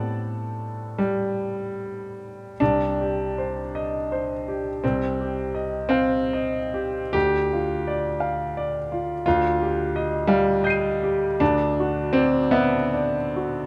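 Mysterious and hazy, this impressionist classical solo piano excerpt unfolds in 6/8 with rubato phrasing between 35 and 61 BPM in C minor, its clear, intimate grand piano sitting up front with audible action noise across a span from C2 to Eb7, moving from an opening Am9 into a new section at 2.6 seconds that passes through Cm, Eb69/C, Dm and Fsus2/D before reaching D69, heard through close, detailed microphones in a moderate recital hall reverb.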